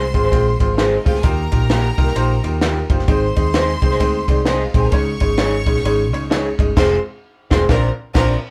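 A band playing live in one room, caught with a moderate studio ambience, opens this joyful, uplifting slice of uptempo 1960s-style soul at 130 BPM in Eb major, swinging lightly in 4/4 over chords moving from Fm through Ebadd9, Ab and Dbsus2. A clear, worn baby grand piano with long sustain sits up front alongside a compact cocktail drum kit with a high-tuned snare, punchy kick and rolled-off top, while a dark, foam-muted fingered electric bass rounds out the low end. Biting violins with light vibrato carry a second line above slightly broken-up, lo-fi guitar stabs in the background, and the band hits a shared accent from 6.8 seconds to the end of the excerpt.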